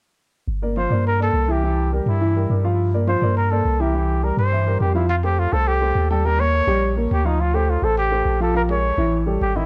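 A straight 4/4 pulse drives this lively, sophisticated Afro-Cuban jazz passage, cut from a longer piece. A punchy sub bass with a deep, sine-like tone and a pitch-drop attack enters at 0.5 seconds and sits up front, while a grand piano supplies smooth, vintage-sounding accompaniment with a short sustain. At 0.8 seconds a breathy trumpet takes the solo melody in jazz style, its mellow tone, light vibrato and scooped notes coloured by tape echo. The opening section circles between Gm7 and C7, and the second section from 5.1 seconds moves through Fadd9, Eb7, Dm7 and Bbm7 before settling on A5. Light reverb frames a dark, warm production.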